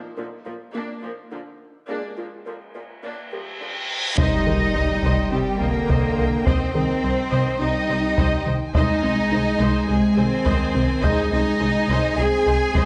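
A cinematic hybrid of orchestral and electronic film scoring, this tense, futuristic passage in C minor moves at 105 BPM in a straight 4/4 and is cut from a longer piece. It opens on a Bb chord with a warbly, dusty, lo-fi pluck, chorused and delayed, spinning arpeggios in the background while a felt-muted upright piano adds a very quiet, intimate texture. A lush viola section and an up-front cello section take up accompaniment and bass almost at once, with a lone taiko hit at 0.5 seconds, as a filter sweep builds toward an electronic reverse cymbal from 3.1 seconds. At 4.2 seconds an impact lands on C minor and the full ensemble arrives: compressed, saturated taiko played with hard sticks, a tight and mellow French horn section holding chords, a focused double bass section on a low C, and two chamber violin sections, one carrying an expressive, close melody and the other an intense second line. 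The harmony shifts to Ab over C at 8.7 seconds, all of it set in a wet scoring-stage reverb with the highest frequencies trimmed away.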